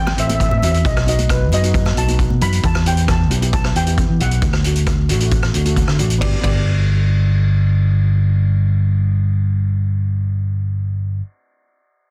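Calypso at 134 BPM in G major, sunny and carefree, with a shimmering lead steel pan carrying the melody over a double-seconds pan accompaniment and a punchy, up-front fingered electric bass, while a boomy-kicked street-band drum kit with dark cymbals and a softly clipped snare drives the groove until 6.6 seconds, high-tuned congas add a very quiet, dry touch only until 2.5 seconds, and a pan fill at 5.5 seconds leads into a second section landing on G, all in a dense, heavily limited, nearly reverb-free mix cut from a longer piece.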